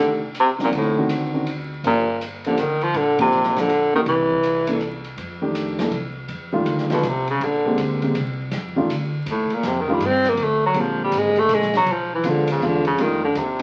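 Relaxed and swinging, this small-group swing and bop cut moves in 3/4 at 162 BPM, with a baritone saxophone up front carrying the melody in a subtoned, vibrato-laden vintage voice full of scooped notes, pausing between 4.8 and 6.9 seconds before taking a solo from 6.3 seconds. Intimate grand piano with audible action noise comps beneath, a woody, thumpy pizzicato upright bass holds the low end, and an airy drum kit with dark cymbals, medium-tuned snare and boomy kick joins at 0.3 seconds, the band hitting an accent at 3.1 seconds. The harmony leans on F13 and Bb13 with a diminished passing chord, all bathed in a wet large-studio reverb and the crackle of a very old 78 rpm record.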